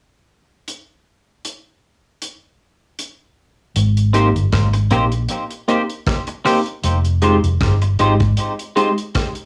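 A dry, cassette-tape-tinged 70s drum kit of tight kick, hi-hat and rim click opens this sweet, romantic lovers rock reggae excerpt alone at 0.7 s in a lightly swung 78 BPM Ab major groove, joined at 3.8 s by a dark, round, foam-muted fingered bass sitting up front and then at 4.1 s by a barky, lightly overdriven tine electric piano with medium tremolo and tape echo alongside twangy, clean picked electric guitar stabs with analog chorus and tape echo, moving from Abmaj7 to Fm7 in a moderate studio ambience with a home-cassette character.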